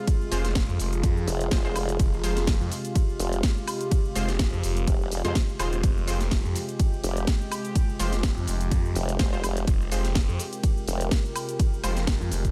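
Bass house at 125 BPM in F minor with a gritty, swaggering swing, built on a punchy, tape-warm kick and a house kit of cracking snare, hi-hat, ride, shaker and woodblock, while a swirling, overdriven detuned saw bass with phaser and a wobbling formant-filtered bass from 1.3 s sit up front, a bold orchestra-hit-like stab with delay sits in the background, and a bright, evolving resonant pad holds a sustained Fm chord while a dark, lo-fi warbling pad adds texture, both under sidechain pumping.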